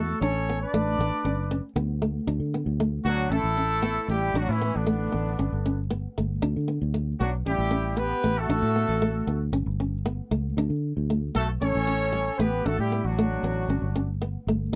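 A dry, close recording in a 1970s studio style frames this sunny, carefree highlife guitar band excerpt, cut from a longer piece, in a straight 4/4 feel. A punchy, tight horn section with light vibrato and octave doubling carries the melody up front, while a fingerpicked flamenco guitar supplies acoustic accompaniment and a round, foam-muted fingered electric bass sits dark and direct beneath. The horns drop out at 14.1 seconds, leaving guitar and bass to close over chords that cycle through D, G and A7.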